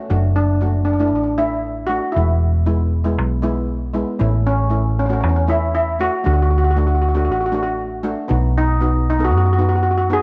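Calypso with a bouncy, sunny mood, this short excerpt cut from a longer piece moves in a straight 4/4 feel. A lead steel pan carries the melody from 0.4 seconds, its metallic, shimmering tone struck with hard rubber sticks and given a vintage, band-limited character that sits up front. Alongside it, cello pans played with medium rubber sticks supply the accompaniment from 0.1 seconds, lighter in level and airy in sound. A hollow-body short-scale electric bass, fingered and amped, anchors the low end with a dark, round, punchy voice that also sits up front. The harmony moves through Dadd9/F#, E, A, D and B7, and light reverb with small room ambience frames the ensemble.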